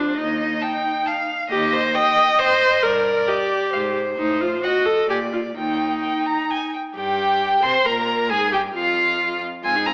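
Cheerful and graceful, this quick classical-period movement for string quartet moves at 134 BPM in a straight 3/4 in E-flat major, heard as a short cut from a longer piece. The melody violin enters at 0.6 seconds, singing up front in its high register with rich vibrato, expressive portamento and a bowed line. Beneath it, a second violin carries a smooth, even line with a silky top, while the viola sits close and forward in the accompaniment, its tone full and vibrant. The cello holds the bass with a clear, bowed sound and vibrato, set back beneath the upper voices. Harmonies pass through colourful turns such as a diminished seventh before settling on E-flat, and at 7.0 seconds a new section opens on minor chords with added tones. The quartet sounds as if heard through an AM radio, its narrow, boxy tone bathed in the wet reverb of a recital hall.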